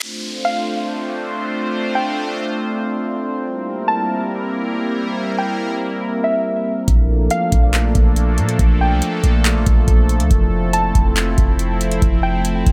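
A bright, detuned sawtooth pad opens this atmospheric cloud-rap excerpt at 0.0 seconds, sitting up front with chorus, a filter swell and a sidechain pumping, while a reverse cymbal and downlifter add electronic effects underneath. From 0.4 seconds a warbly, dusty pluck carries the melody high above, its lo-fi square-and-saw tone shaded with a noise layer, a low-pass filter, chorus and tape echo. The chords move from Dm7 to C7, Bbmaj7 and Fmaj7 in D minor at 140 BPM, felt in half-time, giving the piece an ethereal, melancholic mood. At 6.9 seconds a booming analog drum machine arrives with a deep kick, metallic hi-hats and handclaps, re-recorded in a small room and placed up front. A clean, sine-based 808-style bass enters with it, dark and boomy with a fast attack and a decaying tail. Light reverb softens the whole mix.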